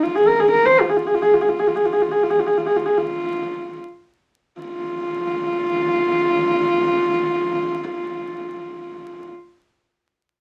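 A lone horsehead fiddle opens this short passage of Mongolian folk music in free time, its dark, husky tone sitting close and up front as it moves between F4 and C5 in the F yu mode with light vibrato, soft attacks, portamento and an airy bow. The line slows down through the first 4.6 seconds before a second phrase runs to about 8.5 seconds, giving the windswept, vast mood an intimate, solitary voice. A short club-like ambience and a layer of vinyl crackle surround the single bowed player.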